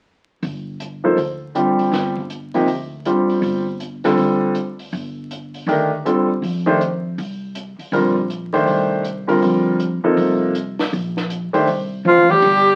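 Modal jazz with an intense, hypnotic swing, cut from a longer piece: a woody pizzicato upright bass and a dark, compact cocktail drum kit with a high-tuned snare start at 0.4 seconds, a clear, intimate baby grand piano with audible action noise comps over sus chords from 1.0 seconds, and as a drum fill begins, a bright, vibrato-laden tenor saxophone and a raspy, growling trombone enter together at 12.1 seconds, all heard through wet studio reverb and the crackle of a very old 78 rpm record.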